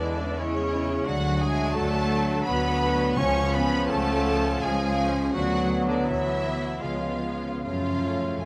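A violin section carries the melody in this solemn, yearning classical passage, its bowed line lush with vibrato and a soft attack, set slightly distant, spanning C#5 to C#6. The piece moves in a rubato 3/4 at roughly 70-88 BPM, cut from a longer work, and is built on chords that pass from C#m/E through Bm/D and C# to a closing F#m. Beneath the melody, a mellow cor anglais, an airy, hollow large flute ensemble, a quiet clarinet and a second, smoother violin section sit in the background as supporting lines. A rich viola section with touches of portamento and a warm bassoon fill out the accompaniment, while a very quiet French horn section holds sustained chords and a ringing, thumb-plucked concert harp plays arpeggios spanning F#2 to E5. A lush cello section and a focused double bass section anchor the bass, and soft, dry timpani on calf heads enter at 3.2 seconds and return at 7.6 seconds for a closing fill, all captured with close, detailed microphones and light reverb.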